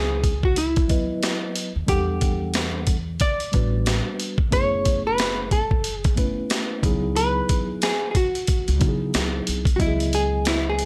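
A dark, clean hollow-body jazz guitar carries the melody up front in this cool, mellow jazz-hop excerpt, then takes a solo at 9.8 seconds. It rides over minor eleventh chords from a clean tine electric piano heard through its built-in speakers and a woody pizzicato upright bass. A gritty, compressed boom bap sampler kit, with a thumpy kick and high-tuned snare re-recorded in a large room, enters at 0.2 seconds with a swung hi-hat, all under light reverb.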